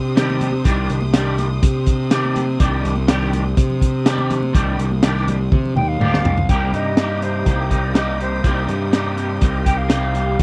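A lush symphonic string section holds sustained chords in the background while a fuzzy, overdriven picked bass sits up front. Within a moment, a gritty breakbeat drum kit with a punchy kick and high-tuned snare joins, along with a twangy, double-tracked electric guitar riff played through a rotary speaker and very quiet, ringing congas. This dark, mysterious psychedelic rock excerpt moves at 123 BPM in C minor with a dry, close 1970s-style studio sound, and a distant silver concert flute enters at 5.8 seconds with an expressive vibrato melody treated with tape echo, in the middle of a drum fill that carries the harmony from Cmadd9 to Cm7 as the congas stop at 6.5 seconds.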